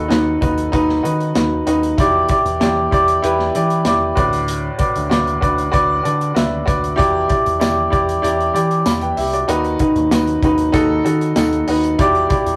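A rough rehearsal-room recording with a wet small-room reverb captures this bittersweet, driving piano-driven pop excerpt, where a clear, up-front baby grand carries the accompaniment over B/D#, Em7 and D6 chords, a picked electric bass sits round and dark beneath it, a smooth acoustic drum kit with a tight kick and a rolled-off top keeps a straight pulse, and a jingly, saturated tambourine joins in the background at 7.6 seconds.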